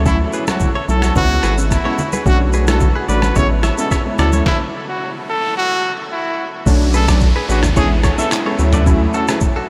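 A cut from a longer afrobeats piece at 109 BPM in B dorian opens with round, detuned analog keys carrying a chorus effect, a twangy, clean electric guitar riff tucked in the background under diffuse ambient delay, and a deep, saturated sub bass, all sounding together from the first moment. A bright trumpet with vibrato and a smooth top takes the solo melody almost immediately. It floats over a compressed, pitched-down, gritty sampler-style drum kit with a thumpy kick, snare, rim click, handclaps, shaker and toms, and ringing, close, very quiet congas that fall away at 4.5 seconds. The groove stops there, leaving a hush until 6.7 seconds while an electronic noise sweep and downlifter emerge from the background. The chords glide through Dmaj9, C#m7, Bm9 and Amaj7 before resuming on Bm9, giving the smooth, sultry mood a dreamy haze inside a huge, reverb-soaked mix.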